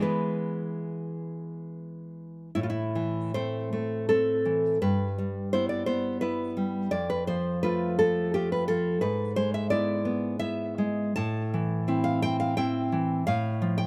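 Romantic solo classical guitar in A minor, wistful and intimate, moving in a rubato 3/4 at roughly 68-89 BPM across this 13.9-second excerpt cut from a longer piece. The fingerpicked nylon-string guitar sits up front with a full-bodied, deep classical tone, finger squeaks audible as it ranges from F2 to A5 through a harmony that opens on E, settles into Am, then passes through F and E7/G# before closing on a rootless Dm/A. Light reverb surrounds the outdoor recording, and a faint mains hum lies beneath the playing.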